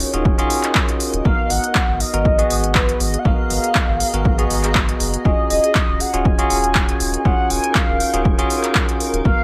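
An up-front deep house kit of handclaps and smooth hi-hats with a small-room character sets a light 16th-note swing at 120 BPM in 4/4, and a punchy electronic kick joins at 0.3 s. This warm, smooth deep house excerpt sits in Eb minor, moving from Ebm11 to Abm9 at 1.3 s and returning to Ebm11 at 5.3 s. A deep, nasal, dark analog bass with a fast attack pumps against the kick, while a bell-like tine electric piano plays bright, clean stabs that also pump and carry a delay. Over them, a horn-like sawtooth synth lead with a soft attack, filter sweep and vibrato sings a round melody through analog chorus and delay. A cloudy, evolving granular pad drifts in the background with its own reverb and sidechain pumping, and the whole mix sits in light reverb and digital ambience.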